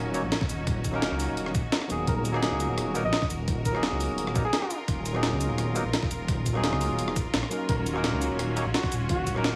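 Bathed in a light digital ambience, this dreamy, lush fragment of liquid drum and bass sets a barky tine electric piano with dub echo and bright, vibrato-laden symphonic strings over a deep, rumbling detuned saw bass, a gritty, pitched-up breakbeat kit with a high-tuned snare up front and a thumpy electronic kick, while a veiled, bucket-muted jazz trumpet carries the melody from 2.1 seconds and returns at 7.7 seconds, trailing its own dub echo.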